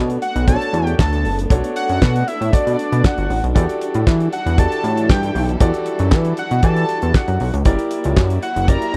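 Funky and slick, this early-eighties boogie funk excerpt has a dry, close studio sound, with a damped acoustic drum kit up front (tight kick, fat snare, hi-hat and handclaps) entering at 0.1 s over a glossy, nasal chorused synth bass with a plucky filter that plays from the very start. A brilliant grand piano plays accompaniment while a lush bowed string section sits in the background, holding sustained chords with vibrato and portamento as the harmony moves from Bm9 through Em11 to F#7b9b13. From 0.2 s an analog lead carries the melody, its detuned sawtooth tone thickened by a sub octave, filter sweep, vibrato and slapback echo.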